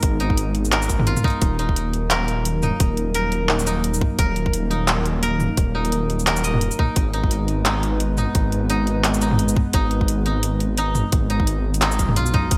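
A half-time drum and bass groove runs at 173 BPM in 4/4, with a 57% swing on the sixteenths giving this cinematic, dark drop a loping push. An overdriven electronic kick sits tight and up front, joined by a layered drum kit of handclaps, bright hi-hats, shaker and toms, treated with overdrive and gated reverb. Beneath them, a detuned saw bass rumbles deep and saturated, its sustained tone beating as the harmony moves from Abm to Ebm and back to Abm at 7.0 seconds. A moody analog pad holds slow-attack, wave-folded chords with chorus and sidechain pumping, while a dry, woody koto plucked with fingerpicks spins arpeggios through a delay. Light reverb and a bright 1980s-style digital sheen frame the whole passage, which is cut from a longer piece.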